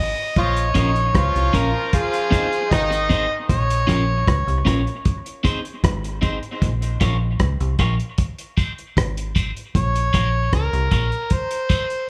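A gritty, overdriven harmonica with scooped notes, tongue slaps and dub echo opens this spacious, heavy dub reggae piece in Bb minor at 77 BPM alongside a round, foam-muted fingered bass. At 0.4 seconds a cloth-damped, thuddy drum kit with a tight kick, hi-hat and rim click joins, along with a brief burst of clear, octave-doubled vintage horns soaked in echo. A slightly broken-up, compressed electric guitar adds high-pass-filtered accompaniment with echo and gets a filter sweep from 3.5 seconds, and the harmonica returns at 9.8 seconds, all over a Bbm–Ab vamp in light studio reverb.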